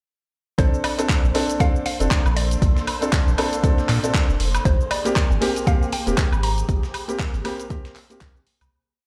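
A swung four-on-the-floor pulse from an overdriven, up-front electronic kick drives this sunny deep house piece alongside a house drum kit's clap, shaker, hi-hats and woodblock and a very quiet, gritty sampler-style soul breakbeat, while a round sine sub bass plays a syncopated riff, a felt-muted upright piano with audible action noise and tape echo adds close-voiced stabs over Bbmaj9 and Abmaj9 chords, a silky, dark string machine pad pumps in the background, and a woody mallet-like synth pluck with phaser and dub echo sings hook phrases until 7.2 s, the mix sitting in a large studio reverb as it fades out from 6.0 s.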